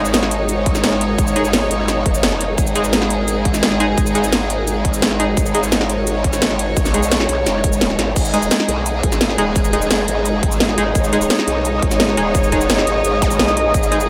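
A rich, earthy chamber string section opens this futuristic, tense slice of dark technical drum and bass, bowing sustained chords with light vibrato over a growling, wobbling bass that sits up front, bright and saturated through a formant filter and chorus. A warbling, lo-fi pad with a nostalgic, mellow sawtooth tone hovers in the background, its chorus and built-in reverb adding haze, and both strings and pad pump against the beat along with the bass. The drum kit arrives almost at once with a cracking snare, metallic hats, shaker and crash, tape-warm and placed up front, and a punchy, overdriven electronic kick joins at 0.7 seconds. From 1.4 seconds a nasal, band-passed chord stab with a detuned, full-bodied sawtooth character sits in the background, treated with chorus and analog delay. The kick drops out briefly at 7.8 seconds before the drop repeats, and a very quiet electronic zap flickers by at 13.2 seconds. 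The whole mix is dreamy and soaked in a lush hall reverb, and the passage is cut from a longer piece.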